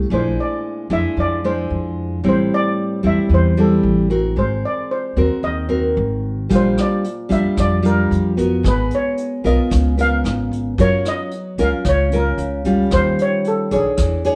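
A straight, even 4/4 bossa nova groove carries this sunny, romantic fragment, cut from a longer piece. A fingerpicked nylon-string guitar with a full-bodied, deep classical tone sits up front from the start, alongside a woody pizzicato upright bass. A shimmering, airy steel pan played with medium rubber sticks carries the melody from 0.1 seconds, its metallic ring bright against the guitar. At 6.5 seconds a vintage brush drum kit joins quietly, mid-forward with a punchy kick, hi-hat and rim click under a rolled-off top. The harmony drifts through lush extended chords such as Bb7#11, Abm9 and Gbmaj7 before landing on Eb9, and the band, playing live together in one room, is framed by a moderate studio reverb.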